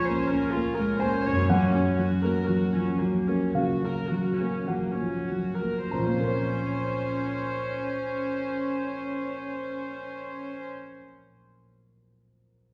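Moving and bittersweet, this short cinematic passage is cut from a longer piece and drifts in Bb minor at a rubato pace of roughly 47 to 65 BPM, slowing down through its first 5.9 seconds. A dark concert grand piano sits up front with a mellow, deep-bassed tone and short sustain, carrying the accompaniment until 12.7 seconds. Beside it, a studio viola section plays sul tasto with a pure, floating, bowed ensemble sound, also up front, before stopping at 10.7 seconds. In the background, a concert harp adds thumb-plucked arpeggios that ring through to 11.0 seconds. The harmony moves from Bbmadd9 to Gb and returns to Bbmadd9 at 5.9 seconds, all set in the lingering reverb of a church or concert hall with a rolled-off top end.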